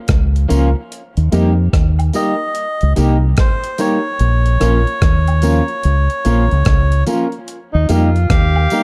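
A deep, round fingered electric bass and a gritty, sampler-style breakbeat kit with a thumpy kick, hi-hat and rim click open this sunny roots reggae excerpt at 73 BPM in Eb mixolydian, joined at 0.5 seconds by a slightly broken-up electric guitar with tremolo and dub echo, woody upright piano stabs, and tambourine and woodblock tucked in the background. A reedy, nasal melodica carries the melody from 2.2 seconds, its dub echo trailing over a swung sixteenth-note feel as the chords move between Bbm and Eb. Near the close at 7.7 seconds a breathy, whispered tenor saxophone adds an intimate second line, all set in a small room with a dark, warm production.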